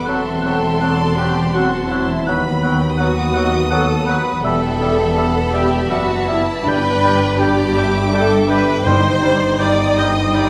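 Classical orchestral music in a slow, romantic vein, this yearning, elegiac passage from a longer movement moves in a flexible triple metre with a rubato feel. Bowed violins carry the melody high up with rich vibrato and a focused, smooth top, while a second violin line, a hollow, airy flute group, a solo oboe with light vibrato and a very quiet clarinet weave supporting lines around it. A close, lush viola section forms the most prominent accompaniment, joined by a distant, roomy bassoon and a mellow French horn section holding soft-attack chords in the background. Cellos with expressive portamento and double basses ground the harmony, and a very quiet, ringing harp plays arpeggios throughout. The harmony turns from minor toward major at 6.7 s, where round, soft-mallet timpani enter until 9.9 s, all set in a moderate concert hall reverb.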